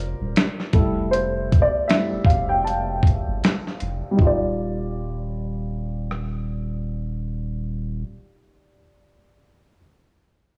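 Lo-fi hip hop at 78 BPM in Eb major with a swung 16th-note feel, nostalgic and dreamy, where a dark, woody upright piano sits up front through a low-pass filter and takes a featured solo with a filter sweep over Ebmaj9 and Fmaj9 chords until 4.2 seconds, a deep, round, mellow sub bass hums underneath, and a gritty, compressed sampler-style kit with a thumpy kick, medium-tuned snare, rim click, hi-hat and finger snaps plays from 0.4 to 6.3 seconds, set in a small room with light reverb and a cassette tape character.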